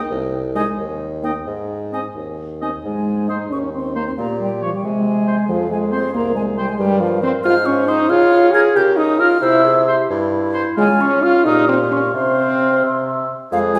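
In a straight 6/8, this quick classical-period movement for wind quintet opens with the bassoon alone at 0.1 s, its tone carrying a light vibrato, before the other four join at 0.6 s, the whole passage urgent and dramatic in mood. A hollow, pure silver concert flute, close and tongued with vibrato, carries the high melody. A roomy oboe sings the second line, the dark clarinet sits in the background, and a smooth French horn stands up front as the strongest voice in the accompaniment. The wet recital hall places the listener further back, with some lossy compression artefacts, and the passage is cut from a longer piece.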